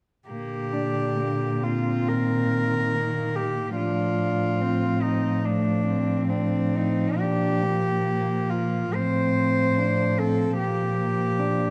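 Tender and lyrical, this rubato classical excerpt for cello quartet in Bb major moves at 70 BPM, with a rich, floating lead cello carrying the melody up front over a second rich cello line, while two dark, woody cellos with vibrato supply the accompaniment and bass, all four bowed sul tasto from 0.3 to 11.7 seconds in a moderate recital hall reverb.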